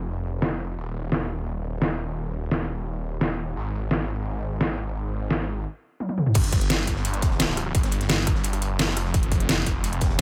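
A straight 4/4 pulse at 172 BPM drives this tense, futuristic stretch of dark technical drum and bass, cut from a longer piece. A snarling, distorted saw bass sits up front from the start, growling between Eb1 and Ab1 with a detuned unison sawtooth, a sine layer, a moving notch, overdrive, compression and sidechain pumping, all lending it a bright, aggressive bite. From 0.4 seconds a layered electronic dubstep kit, also up front, adds a deep snare, metallic hats, rim clicks, toms and crash, all low-pass filtered and re-recorded in a small room. A drum fill begins at 6.0 seconds and leads into the drop at 6.4 seconds, where a punchy, tape-warm electronic kick enters. Around the drop, a crunchy acoustic breakbeat kit with a high-tuned snare and gritty, saturated hi-hats also joins, its top rolled off as it sits in the background. The mix is dry.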